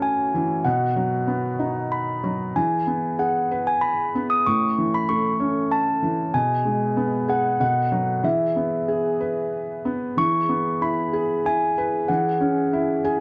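A gently rubato 3/4 at 95 BPM sways through this tender, innocent children's lullaby in E major, tuned to A4 = 442 Hz and cut from a longer piece. Up front, handbells carry the melody between E5 and D#6 with a clear, ringing, mellow tone struck by soft clappers. Beside them, a felt-muted upright piano plays the accompaniment from A2 to G#5, its thin felt giving it an intimate, natural sound. Further back, a warm French horn section holds sustained chords with light vibrato, sounding distant and roomy in a classical ensemble style. The harmony moves from F#m7/A through B, E and A, then E/B and B7 back to E, and a new section begins at 10.2 s. A short felt piano fill arrives at 12.7 s over a C#m/E chord, all set in moderate studio reverb within a dark production.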